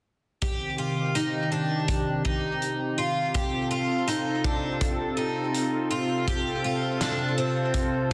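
Dream pop at 82 BPM in C dorian, ethereal and hazy, this brief cut from a longer piece sets a thick, detuned sawtooth unison pad with chorus and phaser holding sustained chords beside a bright, shimmering twelve-string acoustic guitar picking arpeggios through lush chorus and tape echo, while a loose indie drum kit with a punchy kick, medium-tuned snare and hi-hat sounds gritty and saturated with a rolled-off top, all moving from Cm to F/C at 3.4 s and Dm7/C at 6.3 s inside a wet concert hall reverb and a dense, heavily limited modern master.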